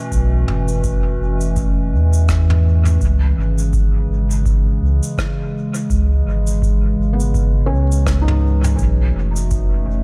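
Hazy and meditative, this ambient dub excerpt drifts at 83 BPM in 4/4 with a gentle swing on the sixteenths, settled in C# minor and tuned slightly below standard pitch. A warbling, detuned pad with a lo-fi, nostalgic tint holds dark sustained chords through a chorus and its own reverb, moving from B7sus4 to C#m7 and back. Beneath it a round, sine-like sub bass sits up front, its tube saturation giving the low end a rounded heft. A dry, deep electronic kick stays in the background while a vintage brush kit, warm and small-roomed, adds cabasa, rim clicks and toms trailing into dub echo. At 7.1 seconds a felt-muted upright piano enters with soft, intimate arpeggios, its action noise audible and its notes also caught in dub echo, all set within a studio ambience.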